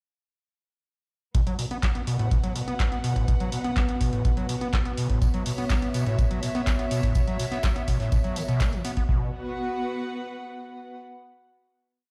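At 1.3 seconds a gritty, trippy acid house groove at 124 BPM in straight 4/4 arrives over a B5 chord, led by a dry, deep electronic kick playing four-on-the-floor up front. Beside it, a squelchy, saturated square-wave acid bass runs an eight-step riff with accents and slides, its resonant filter sweeping while tube overdrive, subtle chorus, delay and sidechain pumping thicken it. A punchy analog drum machine, re-recorded in a small room, adds programmed closed and open hi-hats and a handclap backbeat, while a detuned sawtooth pad with a sub octave and chorus holds moody sustained chords and a high note in the background, pumping against the kick. A dark chamber string section plays bowed with light vibrato and a smooth top, its slowly shifting chords also breathing with the sidechain. From 5.2 seconds a soft brush kit joins quietly in the background with a fat snare, hi-hat and tambourine in a looped, edited breakbeat, before the strings carry the final chord through to 11.0 seconds, the whole mix sounding as if played on a big sound system in a bare stone room with light reverb.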